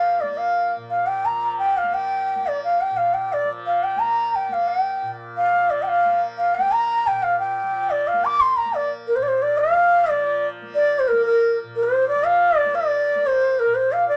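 An airy bamboo bansuri carries the melody up front, close-miked with vibrato and tongued notes, ranging from Bb4 to D6 in raga bhupali on Bb over a softly plucked, buzzing, shimmering tanpura drone that sits far beneath it. This devotional, radiant fragment of Hindustani classical music moves in a straight 4/4 at about 177 BPM and speeds up throughout, shifting into a new section at 10.1 seconds. Vinyl crackle and a moderate studio ambience frame the sound.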